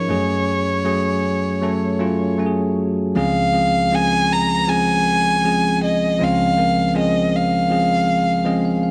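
In a straight 4/4 at 79 BPM, this emotional, heartfelt pop excerpt in Db major pairs an intimate, close solo violin melody, bowed sul tasto with vibrato, a soft attack and airy tone, against a bright, clean, bell-like tine electric piano accompaniment heard through its built-in speakers, both up front in a lush hall reverb, as the harmony moves from Gbmadd9 to Dbmaj7 at 3.2 seconds and the electric piano adds a fill at 8.1 seconds.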